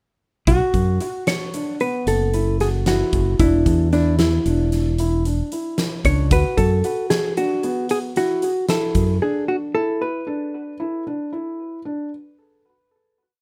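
From 0.5 s a tense, brooding progressive instrumental in 11/8 at 227 BPM (eighths) in B dorian sets a dark, clean, compressed hollow-body jazz guitar up front with an arching motif-based melody through analog delay, over a mellow, intimate felt-muted upright piano ostinato, a warm, up-front fingered electric bass and a big rock drum kit with a fat snare and punchy kick in a bright stone room; the drums stop near 9.1 s and the bass at 9.2 s, leaving guitar and piano to close this short whole piece with light reverb in a rough home demo mix.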